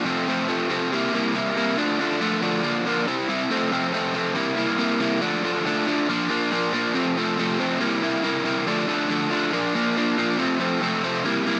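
An up-front, overdriven electric guitar plays alone through this short, wistful yet carefree rock excerpt, its picked, double-tracked and compressed tone cycling through F, C7, Dm and Bb from the opening through a second section at 3.5 seconds, all set in a digital ambience with the rough feel of a home demo mix.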